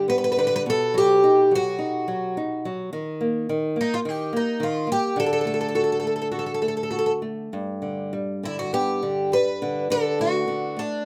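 A moderate studio reverb gives this short passage, cut from a longer piece, an intimate room sound with both guitars placed up front. It is a tender, nostalgic fado-style ballad in G major and 4/4, moving at 99-109 BPM with a rubato feel. A picked twelve-string acoustic guitar carries the melody between D4 and B4, its shimmering, octave-doubled tone ringing out clearly across the full 11.1 seconds. Beneath it, a small-sounding, fingerpicked nylon-string guitar supplies the accompaniment, ranging from G2 to F#4 at a softer level than the lead. The harmony moves from G through B and an Eb5 chord at 2.9 seconds before settling on D, returning to G, and closing on D at 9.9 seconds.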